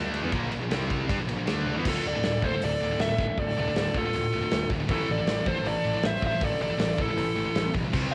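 Heavy metal in D minor at 158 BPM, relentless and dark, cut from a longer piece: a punchy, up-front acoustic drum kit with bright cymbals and a big-room sound drives three distorted rhythm guitars riffing in the background, one of them scooped and another a double-tracked fuzz that drops out after the drum fill at 1.7 seconds, over a growly fuzz bass. At 1.9 seconds a dark, smooth overdriven lead guitar takes the melody up front, joined by a high-gain second line, as the chords move from Dm to A5. The whole has a lo-fi home-cassette character with studio reverb.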